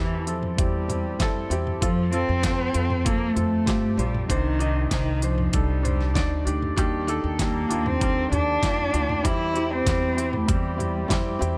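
Bittersweet and dramatic, this piano-driven pop excerpt at 97 BPM pairs a dark, bowed cello melody with vibrato, sitting up front yet distant, over a soft felt-muted upright piano with audible action noise, a woody pizzicato upright bass, and an electronic, layered pop drum kit with a knocking kick, fat snare, crisp hats and handclaps, while a clean, twangy electric guitar riff with envelope filter and tremolo slips in from the background at 6.8 seconds, all bathed in studio reverb.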